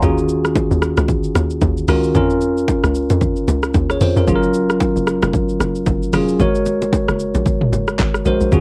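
Amapiano at 113 BPM in 4/4, this hypnotic, soulful clip cut from a longer piece swings its sixteenths gently across about 8.6 seconds. A bell-like tine electric piano sits up front, bright and clean, carrying the accompaniment through Ebm11, Db6, Gbmaj7 and Ab9sus4 with a cassette-tape coloring. Beneath it, a tight log drum bass delivers FM tones with a fast attack, a noise layer and a decaying, percussive punch between F1 and F2. The deep house drum kit is electronic and layered, its punchy kick up front alongside handclaps, hi-hat, rim click, shaker and toms, also tinted by cassette tape. Congas and bongos played with hard hands stay close, dry and acoustic in the background. The whole has the intimate, nearly reverb-free feel of a home recording on cassette.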